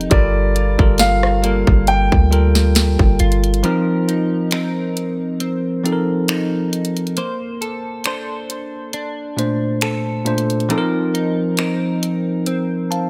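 Contemporary R&B with a longing, late-night mood, carried by an up-front, bell-like tine electric piano, a clean electric guitar playing compressed picked arpeggios through analog chorus and delay, and a trap kit with a hard-clipped kick, sharp snare, bright hats, rim clicks and finger snaps. In the opening seconds, an intimate grand piano sings a short melody with delay and audible action noise, while a deep, boomy 808 bass with a fast attack and noise layer anchors the low end. At 3.6 seconds the piano melody and 808 have dropped out, and the tracks move into a break where keys, guitar and drums carry on under light reverb until the fragment ends.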